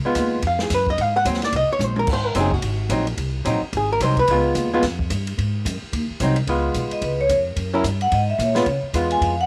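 A woody, pizzicato upright bass opens this relaxed, sophisticated small-group swing and bop passage at 219 BPM in Db major, joined almost at once by a dark, clean, picked hollow-body archtop guitar with plate reverb and a softer, airy jazz kit with dark cymbals, a medium-tuned snare and a boomy kick that plays a fill at 1.8 seconds, before a ringing, metallic vibraphone with slow motor vibrato and plate reverb takes a solo from 6.9 seconds, with the guitar, drums and vibraphone carrying a cassette tape tint within the light reverb of a home recording.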